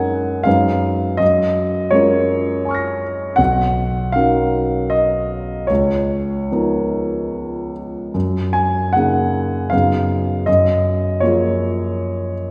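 A solo grand piano opens this excerpt of impressionist classical music, intimate and up front, with audible action noise and long, natural sustain across a range from B1 to A#6. The pace drifts between 72 and 83 BPM in a rubato 3/4, and the luminous, hazy mood comes from chords such as C#9sus4/F#, Bmaj9, C#13 and F#69. A wet concert-hall reverb with a 2.1 s decay surrounds the instrument, and the passage stops at 12.5 s as though cut from a longer piece.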